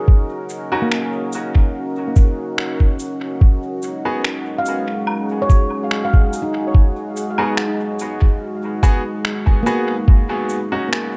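A muffled, thumpy, pitched-down kick sits up front in this hazy, deep ambient dub fragment, beneath a moody detuned sawtooth pad with chorus, a ringing nitrided-steel handpan tracing arpeggios through tape echo, bright woody upright piano stabs and acoustic cabasa, woodblock and finger snaps both sent into dub echo, all moving from Ebm7 to Ab7(no3) in a small, lightly reverberant room.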